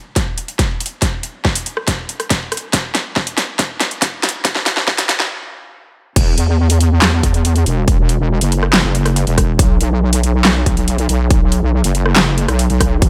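Heavy wobble dubstep at 140 BPM in a half-time 4/4 feel, aggressive and chaotic, this cut from a longer piece opens with a build-up in which a tape-warm, layered kit of huge snare, metallic hats, handclaps, rim clicks and crash cymbal rolls through a drum fill over a punchy electronic kick under a filter sweep, halts in a stop at 5.3 seconds, then hits the drop at 6.2 seconds as an up-front, saturated square-wave wobble bass with chorus and overdrive roars in a dry, close mix.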